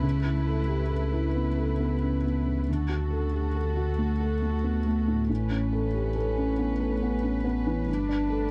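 A felt-muted upright piano sits up front in this short neoclassical excerpt, its thick felt giving a dark, boxy tone with audible action noise as it plays a tender, hopeful accompaniment in a rubato three-beat feel. Beneath it, a deep sine-like sub bass with an octave holds sustained low notes, while a chamber string section bowed sul tasto adds warm, intimate chords with light vibrato. The chords move from Aadd9/C# to D, back to Aadd9 and on to Gadd9 by 7.9 seconds, all captured in a dry, close studio sound with little reverb.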